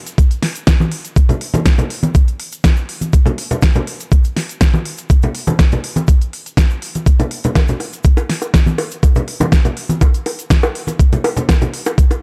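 Nu-disco at 122 BPM in a groovy, sleek straight four, this drums-only excerpt from a longer piece sets a gritty, thumpy, up-front electronic kick drum alongside a layered electronic pop kit with a fat snare and crisp hi-hats, while saturated tube shaker, congas and bongos played with soft hands sit forward in a dark, dry production.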